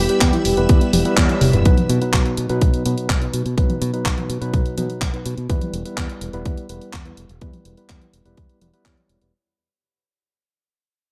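Italo disco at 125 BPM with a sunny, romantic mood, this brief cut from a longer piece opens on E minor with a dark, brassy synth lead carrying chorus and tape echo, a lush string machine holding sustained chords and a soft, round pluck arpeggio, all three dropping out by 1.6 seconds. A clean tine electric piano plays tremolo-laced stabs through a combo amp alongside a bright, punchy fingered bass, while a tape-warm house kit of handclaps, hi-hat and toms and an up-front punchy electronic kick drive the groove. After a drum fill and band accent at 1.2 seconds, the music moves to B at 1.7 seconds and fades out across the rest, returning to E minor at 5.5 seconds, all in a dry, gritty hardware sound with light reverb and transformer saturation.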